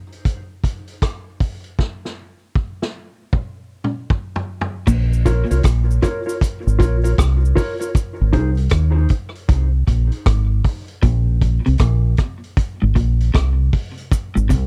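Hypnotic and deep, this dub reggae excerpt opens with a gritty, saturated vintage drum kit playing a break and fill alone, before a round, punchy fingered bass enters up front at 4.9 seconds alongside a faint background cabasa and a clean picked guitar riff with lush chorus and tape echo. A dark mellow electric guitar with tape echo follows shortly after, all captured in a dry, close 1970s-style studio sound with a filter sweep from 7.9 seconds.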